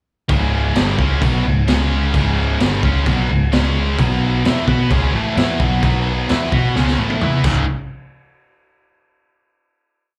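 This sounds like a live gig heard through the venue's PA, with a club reverb around a raw, gritty band. It is a short, driving and menacing hard rock piece in C# minor at 130 BPM in a straight 4/4. Three electric guitars play a picked power-chord riff from 0.3 to 7.6 seconds, moving from C#5 to B5 and back to C#5. Two of them are tight and bright with heavy distortion, and one of those has a slapback echo and sits further back. A sludgy, overdriven, double-tracked guitar, also with slapback echo, rumbles in the background. Up front, a dark, round hollow-body short-scale bass drives in eighth notes and doubles the guitar riff. The raw garage drum kit has a boomy kick, a high-tuned snare, toms and crash cymbal with a saturated, rolled-off top, and it plays a fill from 6.8 seconds leading into the final hit at 7.7 seconds.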